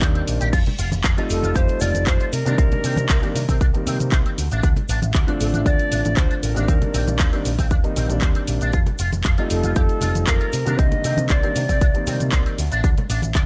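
Groovy and sensual, this nu-disco excerpt moves at 117 BPM in a straight 4/4, centred on C dorian with chords that cycle through Cm9, F9 and Dm7. A punchy electronic kick sits up front, layered with a house kit of crash, handclaps, shaker and warm hi-hats, both in studio reverb, while cabasa, congas and bongos join in the background at 0.5 seconds. A round, dark picked bass runs through an envelope filter beneath a bright, twangy guitar riff that also uses an envelope filter and carries an ensemble chorus. A mellow baby grand piano with long sustain supplies accompaniment, roughened by vintage 12-bit sampler grit and pumping with sidechain. From 1.3 seconds a hollow, pure concert flute with vibrato and tongued notes takes the melody through tape echo, all set in a digital ambience touched by lossy compression artefacts.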